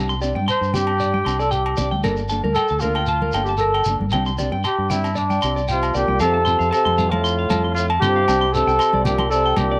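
A straight 4/4 groove at 115 BPM is carried by a round, punchy fingered bass, damped high-tuned congas, grainy shekere and ringing agogo bells in the background, setting up a sunny, joyful highlife guitar band feel in F major, tuned to A4 = 436 Hz. A bright, twangy clean electric guitar plays arpeggios through tape echo over a dark, fingered electric guitar accompaniment with tremolo, while a dark, roomy trumpet sits up front with the melody in a jazz style with light vibrato. At 5.7 s a breathy, veiled trombone with a cup mute joins on a soft second line, and the whole passage, cut from a longer piece, sits in wet spring reverb with small-room ambience.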